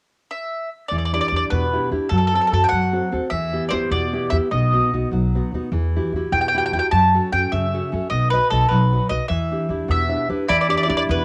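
An up-front, woody double-string mandolin picks out a romantic, wistful Italian folk serenade melody from 0.3 seconds in E minor at 100 BPM in a straight 6/8, soon joined by full-bodied fingerpicked nylon-string guitar with audible finger squeak and a pizzicato steel-string upright bass colored by tube saturation, moving through chords such as Em7, F#dim, Emadd9 and B. The guitar adds a short fill at 9.9 seconds before a second, rounder mandolin line enters at 10.5 seconds, all captured as a cassette-tape home recording in a small room with light reverb.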